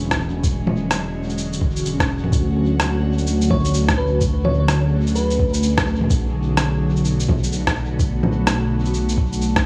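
A swung 127 BPM future garage groove in 4/4 is carried by a muffled, thumpy overdriven kick and an up-front, pitched-down patter of rim click, bongos and shaker soaked in dub echo, all with a compressed, small-room grit. Beneath it, a deep, rumbling detuned saw bass and an ethereal, airy pad both pump with sidechain compression, the pad drifting through chorus, phaser and reverb across E13, Dmaj7 and Bm7 chords for a melancholic, ghostly mood. From 3.5 to 5.5 seconds a sparkling, bell-like FM electric piano adds a brief, warbling vintage melody through tape echo, all within an echo-heavy mix cut from a longer piece.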